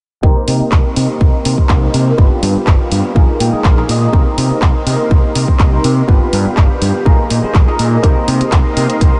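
Filtered disco house with a sensual, groovy feel, built on a punchy up-front electronic kick and a growling overdriven fingered bass, with a nasal, funky polysynth comp carrying chorus and phaser, a lush string machine ensemble in the background, a very quiet clean electric guitar riff that adds a fill at 3.2 seconds, and a house kit of handclaps and bright hats, as the polysynth, strings and bass pump under sidechain and a filter sweep runs across the whole cut over Cm7, G7 and Bb7sus4 chords.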